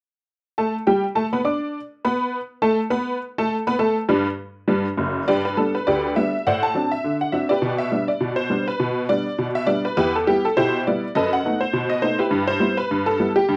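Ragtime piano in a lively, cheerful swung two-beat feel, played by a solo honky-tonk upright piano whose detuned, jangly, vintage tone sits up front across a broad range from 0.6 to 13.6 seconds, moving from G through D7/A, Em and B7/F# to Em/G in a short clip cut from a longer piece, with moderate studio reverb and a dark production.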